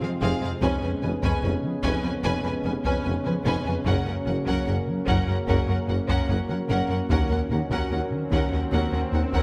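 A moderate scoring-stage reverb surrounds this brooding, tense excerpt of hybrid orchestral and electronic film score at 74 BPM, moving from Fm through Db7/F and Gb to Ebm7. Lush vibrato violins carry a focused melody over a second violin line, clear viola accompaniment, and sustained chords from mellow French horns, close-miked trombones and a chorused analog pad. Underneath, a gliding sawtooth synth bass riff sits in the low end with bowed cellos, double basses and a vintage-toned tuba, while a compressed, saturated taiko ensemble enters at 0.6 seconds and an electronic swell rises in at 8.1 seconds.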